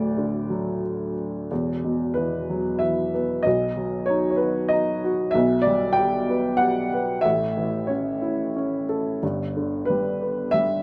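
Set in light reverb, this short passage from a longer piece places a woody, slightly detuned upright piano up front, with audible action noise lending it an intimate, natural closeness. The classical solo piano plays lyrically in 3/4 with a rubato feel, ranging from D1 to G5 in a sunny, relaxed mood. After an opening on D, the harmony moves from Esus2 at 1.5 seconds through B, Em9/B and A before settling on G at 9.2 seconds.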